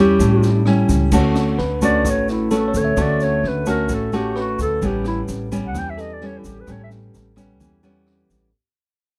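Bossa nova at 130 BPM in 4/4 with a straight feel in D major, this romantic, sunny fragment of a longer piece has the dry, close sound of a 1970s-style studio, touched with light reverb. A breathy clarinet carries the melody up front, its mellow, whispered tone marked by light vibrato, scooped notes and a soft attack, and it takes a jazz-style solo from 1.1 s before falling silent at 6.9 s. Beneath it, a fingerpicked nylon-string guitar sits equally forward with a classical, fresh-stringed sound and audible finger squeak, while a pizzicato upright bass adds a woody, growly low end. An open jazz drum kit with dark cymbals, a high-tuned snare, rim clicks and a boomy kick stays in the background alongside a grainy egg shaker. A bell-like tine electric piano joins at 1.6 s with a clean, direct tone as the harmony moves from A7 to Dmaj7 and then A9, and the whole passage fades out from 1.1 s onward.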